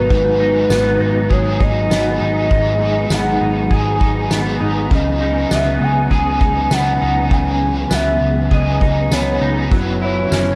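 Haunting and melancholic, this dream pop passage is cut from a longer piece and moves at an unhurried, straight 4/4 pace through G#m7, C#m9 and F#7sus4 chords. A warbling, detuned lead voice with triangle and sawtooth colours and a wave-folded edge carries the melody, its tone thickened by chorus and tape echo. Beneath it, a crunchy overdriven guitar with harmonic tremolo and ensemble chorus supplies the accompaniment, while a second, twangy guitar at the edge of break-up picks arpeggios through chorus and tape echo. A soft, flute-like tonewheel organ holds sustained chords in the background, with key click, chorus vibrato and a stopped rotary speaker. A round, foam-muted vintage bass anchors the low end, and a distant, roomy drum kit played with soft mallets brings a punchy kick, fat snare, dark ride cymbal and tambourine from 0.1 seconds. A lush hall reverb and a touch of small-room ambience wrap the whole mix in a hazy, dreamlike space.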